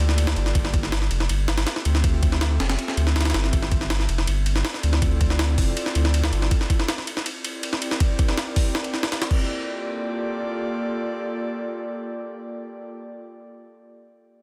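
Dark and atmospheric, this drum and bass excerpt cut from a longer piece opens in a drop, with an airy, breathy pad holding sustained chords under chorus and vintage sampler grit while a deep, thick sub bass with tube saturation sits up front until 6.5 seconds. A gritty, pitched-up jungle drum kit with a thumpy kick and high-tuned snare drives the passage with overdrive and studio reverb before stopping at 9.4 seconds, leaving the mellow pad alone through the closing section. The dense, heavily limited master keeps the sound close and dry, with the harmony moving through minor and ninth colours.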